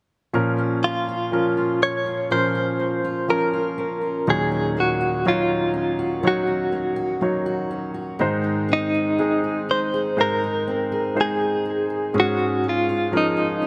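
A slow, straight 4/4 pulse at 61 BPM carries this short pop excerpt in Bb minor, its heartbroken, melancholic mood settling in from the first chord. A clear, polished baby grand piano sits up front with an accompaniment, while a fingerpicked steel-string acoustic guitar with fresh strings weaves arpeggios beneath it, both entering at 0.3 seconds. At 0.8 seconds a clean, direct-recorded electric guitar takes the melody, its picked, compressed tone colored by tremolo and placed up front with a warm edge. The harmony moves from Bbm to Ebm7, then to Ab and finally Db over Ab, lending a faint lift to the sorrow. Light reverb and a touch of studio ambience surround the trio until the excerpt ends at 13.7 seconds.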